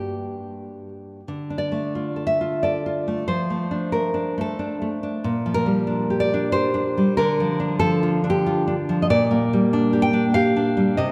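A romantic piece for solo classical guitar in D minor, this brief passage from a longer work moves in a rubato 3/4 at roughly 88-97 BPM, its mood wistful and passionate. A single fingerpicked nylon-string guitar carries everything, sitting up front with the deep, warm tone of fresh strings, ranging from G2 up to G5. After an opening on G minor, the music settles into a longer section from 1.3 seconds, drifting through D minor, D minor over F, a B-flat sixth, B-flat over D and G minor over B-flat. The guitar rings out into the wet reverb of a church or concert hall, whose long 3.8-second tail lets each chord hang in the air and lends the performance a spacious, devotional glow.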